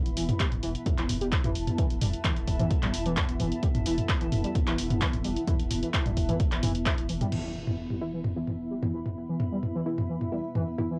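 Hypnotic and dark, this driving peak-time techno cut at 130 BPM in 4/4 sets a blurred, evolving granular cloud pad and a round sub bass pumping under a gritty, screaming overdriven synth lead with chorus and analog delay, while a punchy kick and an up-front analog drum machine of crash, handclaps, hi-hat and toms drive the groove; after a band accent at 6.9 seconds, an electronic impact lands at 7.3 seconds as the lead's filter sweeps, and from 8.0 seconds a muted, detuned dub chord stab joins, all heard through a moderate booth ambience on a cassette home recording.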